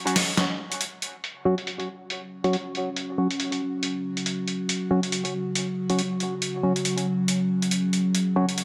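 Dark and cavernous, this deep dubstep excerpt moves at 139 BPM in a swung half-time feel, opening on a gritty, pitched-down sampler-style drum kit of hi-hat and medium-tuned snare, low-pass filtered and tape-warm. A hollow, percussive organ stab enters at 1.5 seconds with chorus and dub echo, and by 2.2 seconds a wave-folded, resonant drone of sustained chords joins, its overtones shifting under a filter sweep with chorus and its own reverb. The parts sit up front within a moderate echo-chamber reverb, settling on an F#5 chord from 1.2 seconds.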